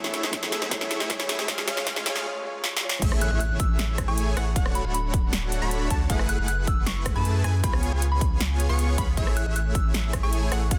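A dense, heavily limited modern mix with light reverb and a digital ambience opens this lush, bright future bass excerpt, cut from a longer piece at 156 BPM in a half-time 4/4 feel in A major. For the first 3.0 seconds a build-up unfolds: a soft, boxy felt-muted upright piano sits in the background with audible action noise, sidechain pumping and digital delay, while a very quiet, airy, breathy pad holds chords until 2.2 seconds, a faint riser rises, and the big-room drum kit plays fills with a punchy snare, metallic hats and crash. Huge, detuned supersaw chords pump and echo throughout, and a punchy, layered electronic kick joins at 0.3 seconds. The drop lands at 3.0 seconds with an impact, bringing in a thick, saturated sub bass up front and a lush, detuned unison pluck playing arpeggios in the background, both pumping. Over it, a pure FM synth bell carries the melody from 3.2 seconds, gentle and decaying with chorus and delay. 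The harmony cycles through F#m11, C#7, Amaj7 and Dmaj7.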